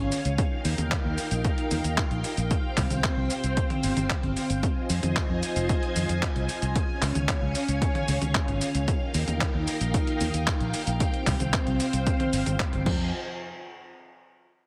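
A lush, vintage string machine opens this melodramatic, nostalgic slice of Italo disco, its full-bodied sawtooth chords swelling in with a slow attack and shimmering under an ensemble chorus, sitting up front from the start. Underneath, a round, dark fingered electric bass plays from 0.0 s. A clean 12-bit drum machine enters at 0.1 s, supplying cabasa, handclaps, hi-hat, crash cymbal and toms with a sampler-style, small-room character, and a punchy, tape-warm analog kick joins at 0.4 s. The straight 4/4 groove moves at 113 BPM in F minor, cycling through Ebadd9, Csus4, Fm7 and Db in a repeating pattern that keeps the mood nostalgic. Light digital reverb adds a touch of space, and the heavily compressed, radio-style sound keeps the mix dense and forward. The parts fall away at 13.1 s, leaving a brief pause before this cut from a longer piece ends.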